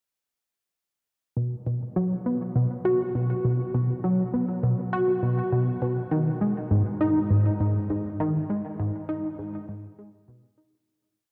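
A tight sequenced synth carries this short ambient piece by itself, sounding from 1.4 seconds to 10.8 seconds as a repeating seven-step loop that drifts against the bar. Its tone blends sawtooth and pulse waves, detuned and treated with chorus, with a fast-attack filter pluck that gives each note a mellow, sustained body while keeping the pattern driving. The part sits up front, ranging from G#2 to F#4 and trailing tape echo behind it. A huge, wet reverb with a long decay surrounds it, making the mood feel expansive and luminous. The whole recording carries the worn character of old cassette tape, with a warbly pitch drift, and it fades out from 7.7 seconds onward.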